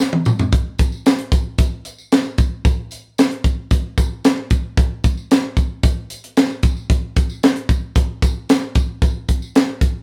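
A straight 4/4 funk groove opens with a short drum fill in the first 0.5 seconds before settling into a steady, late-night pocket. The tight funk drum kit carries the track, with hi-hat, kick drum, snare drum and toms captured with a small-room, mid-forward character and placed up front. Its high-tuned snare sits over a tight kick, giving the beat a compact feel. A jingly, warm acoustic tambourine sits close yet in the background, adding a gentle shimmer beneath the kit for the full length. Light reverb and the sense of a band playing live in one room lend the cut an intimate, funky atmosphere, as though lifted from a longer performance.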